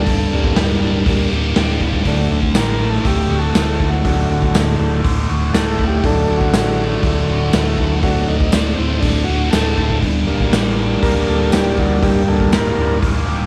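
Psychedelic rock excerpt at 120 BPM in 4/4 with a hypnotic, trippy mood, where a mellow vintage combo organ with light vibrato holds sustained chords and takes a solo over Gm/D and D, while an up-front, double-tracked fuzz guitar plays a bright, distorted riff through a phaser, a round, amped fingered bass sits low, a gritty, saturated garage drum kit with a punchy kick and rolled-off top drives the beat, and a jingly tambourine enters in the background at 2.5 seconds, all set in light studio reverb.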